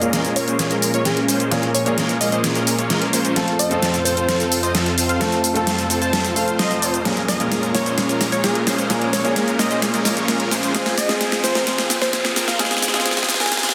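An overdriven pop drum kit with a deep snare, cabasa and hi-hat drives this anthemic, powerful festival progressive house build-up at 130 BPM in Bb minor, joined by huge, detuned supersaw chords under a filter sweep and tape echo, a catchy plucky unison lead carrying the melody, a bright baby grand piano with audible action noise sitting in the background, and a lush chorused pad holding sustained chords, all set in a wet scoring-stage reverb and a dense, heavily limited master, while a very quiet riser enters at 4.6 seconds and a reverse cymbal arrives at 13.5 seconds.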